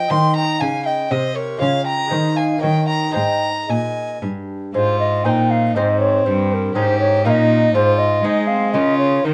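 Classical chamber music in baroque style, this short passage from a sonata movement with continuo moves in a serene, dance-like triple metre with a flexible, rubato feel. A tenor recorder carries the melody throughout, its mellow, hollow wooden tone airy and softened at the top, with tongued notes, a touch of chiff and vibrato. Alongside it a single violin bows a second line in period style, its gut-string sound warm and slightly reedy with light vibrato. A lute fills in the harmony with delicate, bright fingerpicking on double strings, some doubled at the octave. A rich, up-front cello anchors the bass, also played in period manner with a light shimmer of vibrato, and the phrase turns toward a new section at 4.7 seconds, with the ensemble set in a moderate studio reverb.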